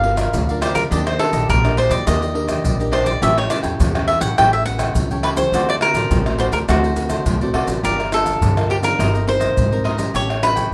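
A straight 4/4 groove in samba and choro style is carried by tight surdo, pandeiro, maracas and tamborim played with hard hands, set in a large-room space. The mood is yearning and bittersweet, moving from Gm7 through Ebmaj7, A7 and D7 before shifting at 7.8 seconds to a second section that returns to Gm7, then Cm7/G and A7. A bright, picked cavaquinho sits up front with the melody, while a second cavaquinho adds crisp accompaniment beneath it. A fingerpicked nylon-string guitar in a classical manner adds warm accompaniment, and a pizzicato upright bass with steel strings gives a woody, thumpy low end. Moderate studio reverb surrounds this short excerpt, which is cut from a longer piece.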